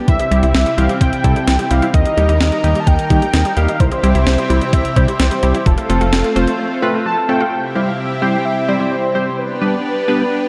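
A straight 4/4 groove from a clean, thumpy 12-bit drum machine and a round, deep analog bass drives this wistful yet bright synth-pop fragment, with a lush, detuned unison pad holding chords beneath a velvety, vibrato-tinged lead that carries the melody through chorus and tape echo, while a punchy, funky polysynth comp and a very quiet, nasal analog pluck playing arpeggios fill the middle, the mix soaked in a dreamy hall reverb, until bass and drums drop out by 6.6 s and the pluck by 7.5 s, leaving pad, lead and comp to carry the final passage.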